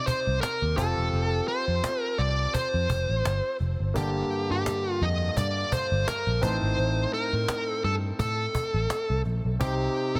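A light reverb and studio ambience frame this moody, dramatic slice of 1980s-style pop at 85 BPM with a gentle sixteenth-note swing, where a smooth overdriven lead guitar with tape echo carries the melody up front over a concert grand piano with audible action noise and long sustain, a snappy small-room cajon with snares, and a dark, round, foam-muted picked electric bass, moving through Cm, Fadd9, Gmadd9 and Adim before returning to Cm at 9.6 seconds.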